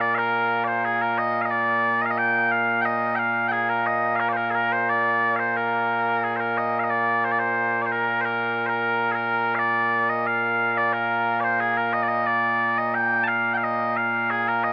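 Mellow small bagpipes open this stirring, ceremonial fragment of Scottish traditional pipe music, playing solo and up front in a straight 2/4 time. Their tone is sweet and continuous, with a touch of vibrato and a light reverb around them. The opening phrase is played through once and then repeated from 6.9 seconds, ending at 14.7 seconds.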